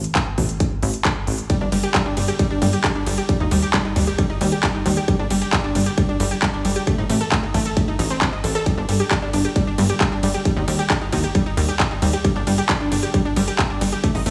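A bright, detuned analog pluck carries the arpeggios from 1.5 seconds, with chorus, tape echo and sidechain pumping, over a funky, sawtooth-edged pumping bass, a punchy up-front electronic kick and a crisp, tape-toned big-room kit of handclaps, hi-hat and ride, giving this excerpt of uplifting trance a driving, soaring lift in light digital ambience.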